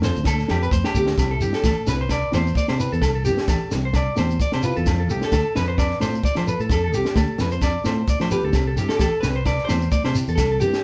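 A danceable highlife guitar band opens at 130 BPM in C major, with fingered electric bass, a compact cocktail drum kit, shekere, a clean electric guitar playing arpeggios and a fingerpicked steel-string acoustic guitar all sounding from the start, while agogo bells and congas join at 0.3 seconds. The 4/4 groove carries a light swing on the sixteenths. The bass is punchy and direct, and the small kit pairs a punchy kick with a high-tuned snare under a dark, rolled-off top. After a drum fill at 1.0 seconds, a vintage hollow-body jazz guitar takes the melody with a dark, clean, picked tone, while the dreadnought acoustic sits in the background, full-bodied, with audible finger squeak. The grainy shekere, ringing, saturated agogo bells and close, dry, thick-skinned congas add texture behind the guitars, as the harmony moves between F and C and another drum fill lands around 8.1 seconds. The band plays live in one room with moderate studio reverb, giving this excerpt a warm feel.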